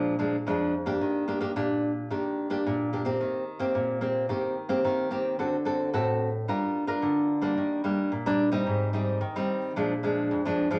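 A full-bodied nylon-string guitar sits up front in a large studio's wet reverb, playing alone in this playful, joyful samba excerpt in straight 4/4. The fingerpicked, classical-style part spans the full 10.8 seconds, moving through harmonies such as Ebmaj7, Cm7/Eb, D7 and Gm7. A repeated opening section returns at 3.2 seconds before the phrase turns back toward Bb7.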